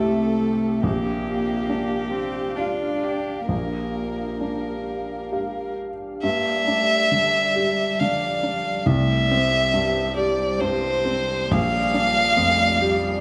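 A roomy, reverberant studio sound captures this reflective, longing neoclassical piece for piano and strings, played together in one room at 67 BPM in a flexible, rubato 3/4 and cut from a longer work. Up front, a single violin carries the melody with light vibrato and an airy, sul tasto bow, and a felt-muted upright piano supplies mellow, vintage-toned accompaniment, while a cello adds a close, intimate second line beneath the melody. Behind them, a dark, glassy FM pad holds ethereal sustained chords with ensemble chorus and its own reverb, as the harmony moves between C and Bb6, passing through G7(no3) when a new section arrives at 6.2 seconds.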